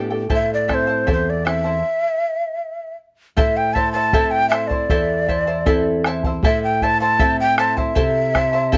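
Andean folk in A minor pentatonic at 78 BPM in 2/4, melancholic and earthy, with a breathy, expressive large quena carrying the melody up front with vibrato and a crisp, chiffy attack over fingerpicked nylon-string guitar, shimmering double-strung charango and a round, dry bombo, all in light reverb, with a stop from 1.8 to 3.4 seconds before the A minor harmony returns.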